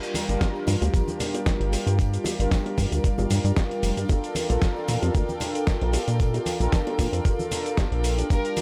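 Glossy, chorused synth bass sits up front in this sleek, cosmic nu-disco excerpt at 114 BPM, its retro pulse-wave and sawtooth tone carrying a filter pluck and ring-modulated edge across a lightly swung 4/4 groove over Gm7 and Bbmaj7. A thumpy, gritty electronic kick drum also sits forward, joined by a tape-warm, sampler-style soul kit of cabasa, hi-hat and medium-tuned snare, while tambourine, congas and bongos add saturated acoustic color in the background with tape echo. Round, dark synth brass plays accompaniment with detuned sawtooth warmth, a filter sweep, chorus, tape echo and sidechain pumping. Behind it, a distant, floating chamber string section holds soft-attack bowed chords that also pump against the beat. Only at 8.3 seconds does a lush symphonic violin section appear up front, sounding a single expressive note with vibrato and portamento, roughened by 12-bit sampler grit and tape echo, all within an echo-heavy mix of light reverb and digital ambience.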